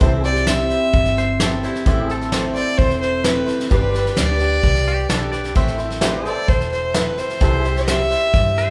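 Lonesome and dusty, this short honky-tonk and classic country excerpt moves at 130 BPM in A minor, with a dark, woody fiddle carrying the melody up front with light vibrato and portamento over a soft brush drum kit with a fat snare and punchy kick. A bright, boxy swing-style acoustic guitar and a round, foam-muted vintage electric bass hold down the accompaniment, while a pedal steel guitar adds clean sustained chords with volume swells and slide. A very quiet concert grand piano with audible action noise slips in at 0.5 seconds, and a twangy, compressed electric guitar joins with a second line at 1.2 seconds, all set in a moderate studio reverb that feels like a band playing live in one room.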